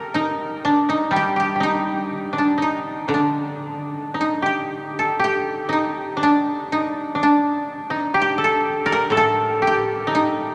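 Rubato at around 61 BPM in 4/4, this austere, calm passage of Japanese chamber music sits in D miyako bushi, tuned to A4 = 439 Hz, and is cut from a longer piece. Two up-front, woody kotos played with fingerpicks carry the melody and a second line in the middle register. A third, lower koto enters at 1.1 s as accompaniment, and the music moves into a new section at 5.2 s, all within a cavernous cathedral reverb.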